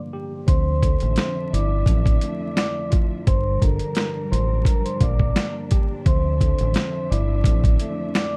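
Dark, dry production laced with vinyl crackle frames this moody boom-bap hip-hop excerpt at 86 BPM in D minor, where a worn, slightly out-of-tune tine electric piano plays alone until 0.5 s, when gritty, overdriven sampler-style drums with a thumpy kick push up front, a round, punchy dub bass anchors the low end, a mellow vibraphone with soft mallets and slow motor vibrato carries the melody, and a lush bowed string section sustains chords in the background over Dmadd9 and Gm7.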